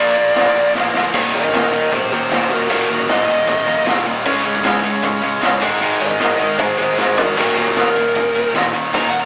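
Punk rock at 154 BPM in a straight 4/4, rowdy and upbeat, cut from a longer piece and carrying the rough feel of a rehearsal room with tube saturation, light reverb and an AM radio tint. It opens on a half-time bar with a drum fill from 0.8 s, and a dark, smooth lead guitar, overdriven and up front, plays from the very start before moving into a solo at 1.1 s over power-chord movement through Eb5, Db5 and Ab5. Beneath it, a double-tracked, high-gain distorted guitar drives the riff up front, joined by a tight distorted guitar in the background and a very quiet cranked stack guitar with a bright, overdriven edge. A growling picked electric bass sits very low in the mix, direct and amped with overdrive. The raw garage drum kit is punchy and gritty, with a medium-tuned snare, a rolled-off top and a small-room sound, adding crash, hi-hat and toms and another fill at 7.0 s.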